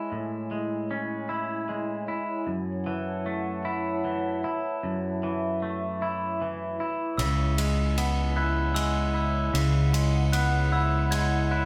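A clean, twangy electric guitar sits up front, picking arpeggios over Amaj7, F#m7 and C#m7 in a euphoric, cinematic post-rock passage in 3/4, cut from a longer piece. Behind it, a warbling, lo-fi pad holds dark, nostalgic chords with a slow attack, chorus and its own reverb. At 7.2 s a growling, overdriven fingered bass arrives alongside a bright ride cymbal and soft-mallet glockenspiel arpeggios ringing in the background, all caught live in a small, wet room.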